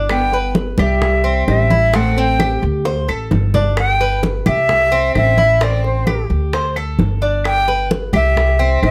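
Closely miked, detailed and dry, this relaxed, sunny Cuban son and guajira excerpt in G major moves at 130 BPM, with an airy, crisp-attacked silver concert flute carrying the melody up front through a slapback echo, a bright, metallic Cuban tres picking arpeggios on its doubled strings, a thumpy, dark pizzicato upright bass, a fingerpicked flamenco guitar adding a second line with audible finger squeak until 2.6 seconds, low-tuned, damped congas, tight high-tuned bongos and woody claves in the background, and a drum fill from 2.9 to 3.8 seconds.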